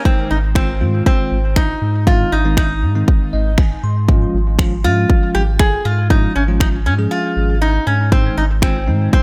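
Summery and upbeat, this short dance-pop cut at 119 BPM in Ab major sets a bright, nasal metal-body resonator slide guitar melody with dub echo over a bell-like tine electric piano treated with phaser, sidechain pumping and dub echo, which adds a fill at 3.1 seconds, while a round sine sub bass pumps beneath a punchy, up-front house kit of kick and finger snaps that drops out at 7.1 seconds before the Db/Ab chord resolves back to Ab at 8.1 seconds in a dry, echo-heavy mix.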